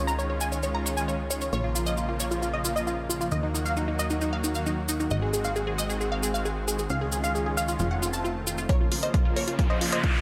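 Bittersweet and euphoric, this uplifting trance excerpt at 134 BPM in Bb minor sets a bright, detuned unison pluck melody with dub echo over a lush supersaw pad and a punchy ring-modulated analog bass, these three pumping under sidechain, alongside a grainy cabasa until 8.7 seconds, when the bass and cabasa stop, a tape-warm kick and hi-hat arrive with a filter sweep for the build-up, and a riser enters at 9.2 seconds.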